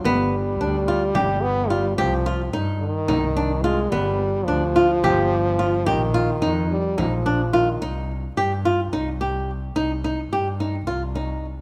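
Close, detailed microphones on a moderate scoring stage give this restless, urgent stretch of contemporary chamber music in 7/8 a vivid, present sound, cut from a longer piece. Up front, a fingerpicked flamenco guitar spins arpeggios with audible finger squeak, a rich bowed double bass holds the bass line with smooth, even vibrato, and a clear French horn with a soft attack sings a classical-style second line until 7.8 s. A deep frame drum, struck with hard hands, sits distant in the background until 7.2 s. The horn continues briefly after the drum drops out, and from 7.8 s the guitar and bass carry the music alone.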